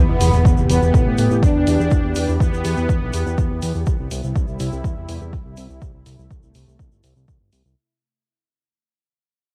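Melodic techno at 123 BPM in a straight 4/4, this brief cut from a longer piece carries a dark, dramatic mood over an Em to C change, with a fade-out running through its full length. A soft, mellow supersaw carries the melody between B3 and D4 for the first 3.8 seconds, its smooth, detuned sawtooth tone shaped by a moving notch, sidechain pumping, cassette tape character and tape echo. Beneath it, a lush unison pad holds sustained chords from C3 to G4 with a slow attack, long release and chorus, also pumping against the kick and colored by cassette tape. A fat analog bass, thick and detuned with a filter sweep and fast attack, sits up front between G1 and A2, pumping in time with the groove. An electronic impact sounds in the background at the opening. Dark electronic hi-hats enter at 0.2 seconds, and a punchy, layered electronic kick drives from 0.5 seconds, both re-recorded in a small room. 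A grainy, bright tube shaker, also entering at 0.2 seconds, sits compressed and saturated far back in the mix. Light reverb and a home cassette recording give the whole a hazy, lo-fi texture.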